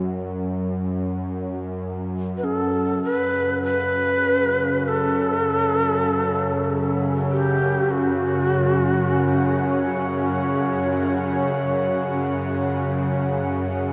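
A tense, string-like bowed drone sits up front from the start, spanning F#2 to F#3 with vibrato and its own reverb. It sets a desolate, ominous dark ambient mood in F# minor and free time. A metallic bronze singing bowl rings on C#4 in the background with slow beating, and a clear, worn grand piano plays arpeggios that are barely audible. At 2.4 seconds a breathy bamboo shakuhachi comes forward with a soft attack and vibrato, carrying the melody between F#4 and B4 through a diffuse ambient delay until 10.3 seconds. From 4.0 seconds a deep, moody pad with chorus and a sub octave sustains mellow chords from C#4 to F#5 to the end of this section, which is cut from a longer piece. The recording sits in a wet cathedral reverb with a long, lingering tail.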